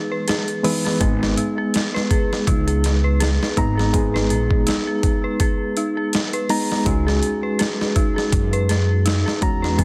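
A swung 16th-note groove at 82 BPM in 4/4 drives this smoky, melancholic trip hop excerpt in G# minor, with a gritty, overdriven sampler-style drum kit of thumpy kick, medium-tuned snare and hi-hat entering up front at 0.3 s. A reedy electric piano with tremolo and tape echo carries the accompaniment while an eerie, inharmonic detuned FM bell spins arpeggios through chorus, tremolo and tape echo. A woody pizzicato upright bass on gut strings arrives at 1.0 s as the harmony moves from E to G#m and then to C#sus4 at 6.9 s, all within light digital ambience and a dense, heavily limited master.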